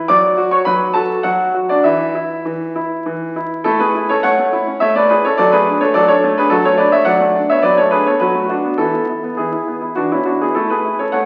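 In an elegant three-beat metre at 104 BPM, this short passage from a classical-period piano sonatina moves with a flexible, rubato feel, its phrases breathing rather than marching strictly in time. A clear baby grand piano plays alone from the start to 11.3 seconds, ranging from E3 up to D6 in A major, with an open, up-front tone and a short sustain that keeps each note crisp. The harmony opens on D/F# before a brief chordless moment, then settles into A major at 3.7 seconds as a second section begins, passing through Bm7/F# and E before coming home to A. The mood is graceful and elegant. The sound carries the patina of a very old 78 rpm record, with vinyl crackle beneath the playing and a wet recital hall reverb that lends the piano a lingering, spacious halo.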